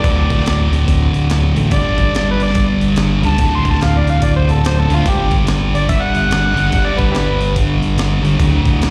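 A swung 144 BPM groove in 4/4 from a compressed, sampler-style breakbeat kit with a thumpy kick and medium-tuned snare drives this swaggering blues rock and southern rock fragment, cut from a longer piece, as it moves between D5 and G5. A double-tracked fuzz guitar riff sits up front over a dark, round, overdriven fingered bass, while an amplified, overdriven harmonica solos in a jazz style with light vibrato, tongue slaps, slapback echo and analog delay before stopping at 7.5 seconds. The whole gritty performance sounds like a live gig heard through the venue's PA, washed in recital hall reverb.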